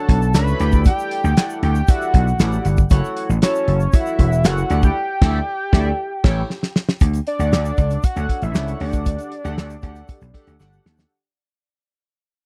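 This dry, close recording has the sound of a 1970s studio, with little room around it. It is a smooth, danceable slice of early-eighties boogie funk in D major, set at 117 BPM in a straight 4/4 and cut from a longer piece. Up front, a damped acoustic drum kit pairs a fat snare and tight kick with hi-hat, handclaps and crash under a rolled-off top, while a punchy, amped electric slap bass sits just as forward beneath it. A glossy, nasal polysynth carries the chords from Dmaj7 through Em11/D, F#m7 and A7, its pulse-width modulation, ring modulation and filter sweep wrapped in chorus, and a grainy, bright egg shaker ticks away in the background. Over this a fat analog lead sings the melody with detuned sawtooth and sub-octave weight, vibrato, and a haze of chorus, phaser and tape echo. The band hits a shared accent capped by a drum fill leading into 7.0 seconds, where the music moves to Dmaj7 and Gmaj7sus2 and begins to fade out, closing on another fill near 10.6 seconds.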